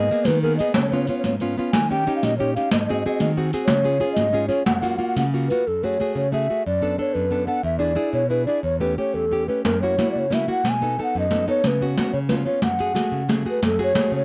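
Italian folk serenade, wistful and romantic, moving in a straight 6/8 at 121 BPM, cut from a longer piece. A breathy, hollow bass bansuri carries the melody with vibrato and tongued notes, close-miked so its bamboo grain sits near the ear. A fingerpicked nylon-string guitar with fresh strings and a full-bodied, deep classical tone supports it up front. The riq adds dark jingles and hard-handed strokes, dropping out between 5.6 and 9.6 seconds before returning. The harmony begins in F# major and turns to F# minor at 5.7 seconds, passing through chains of seventh chords before settling on F#madd9. The sound is dry and close, in the manner of a 1970s studio recording.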